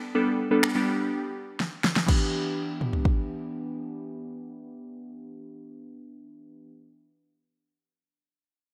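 A straight 4/4 pulse at 124 BPM drives this short dance-pop fragment in E minor, with a driving yet bittersweet mood and a bright, 1980s-style digital sheen. Glassy, warbling synth keys carry the accompaniment with a vintage sine character, fast-attack decaying notes, chorus, sidechain pumping and a low-pass filter sweep. A layered, up-front deep house drum kit joins at 0.6 seconds with a deep kick, fat snare, finger snaps, toms and a crash, all with a tape-warm sound. A drum fill leads into the shift from Gadd9 to Em7 at 2.1 seconds. The drums stop at 3.2 seconds, leaving the keys alone in light reverb and digital ambience.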